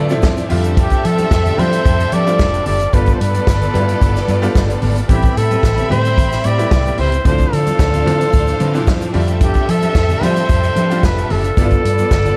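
A soft-attack flugelhorn with scooped, jazz-style notes carries the melody in this glamorous, driving disco excerpt at 111 BPM, over a lush, distant violin section with tape echo, a round, punchy foam-muted bass, a tight-kicked vintage kit, a brilliant grand piano and a slightly broken-up guitar tucked in the background, faint congas and a grainy shaker, all moving through Dm7, F69, G9 and Am9 in a dark production with small room ambience.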